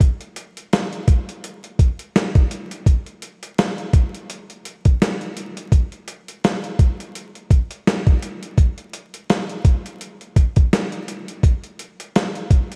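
A dusty, sampler-style soul drum kit carries this dark, reflective hip hop excerpt on its own, sitting up front with a thumpy kick, a medium-tuned snare and hi-hat. The groove moves at 84 BPM in 4/4, with a 57% swing on the sixteenths giving it a loose, laid-back lean. The kit sounds gritty and compressed, with a tape-warm character and the close air of having been re-recorded in a small room. Light reverb and a bed of vinyl crackle surround the drums, adding to the worn, reflective atmosphere. Cut from a longer piece, it runs for 12.8 seconds as a single section.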